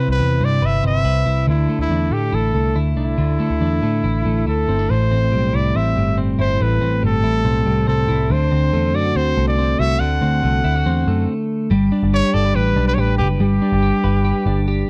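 Jangly indie pop with a breezy, bright mood, heard as a short cut from a longer piece in straight 4/4. A twelve-string electric guitar plays clean, compressed arpeggios up front, its picked strings carried by a slapback echo. Underneath, a vintage picked electric bass with a foam-muted, round, dark tone holds the low end. A trumpet carries the melody with light vibrato and a present, pop-style sound, also touched with slapback echo. The harmony moves from Cmaj7 and Dsus2 through Am7 and D7, then a brief stop at 11.3 s gives way to a Gadd9 passage at 11.7 s. The dry, close 1970s-style studio sound has only light reverb.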